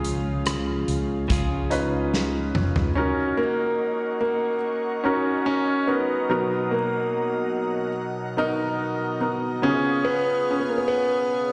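A concert grand piano carries the melody in this emotional, hopeful pop ballad at 72 BPM in F# major, its intimate, present tone revealing audible action noise, deep bass and a long, polished sustain, with a touch of slapback echo. Beside it, a felt-muted upright piano plays soft, mellow accompaniment, also up front with slapback echo, while an airy, breathy pad with a detuned, noise-layered character and chorus holds sustained chords underneath. At the opening, a loose indie drum kit with a fat snare, tight kick and rolled-off top plays hi-hat, kick, rim click, snare and toms, alongside an amped fretless bass and a bright, clean, compressed electric guitar tucked in the background playing arpeggios. After a drum fill from 2.1 seconds, the drums and bass stop at 2.9 seconds and the guitar follows at 3.5 seconds, leaving the two pianos and pad moving through F#6, Bmaj7 and C#7. The excerpt sounds like a live gig heard through the venue's PA, with small room ambience, recital hall reverb and a top end that fades out above about 10.6 kHz.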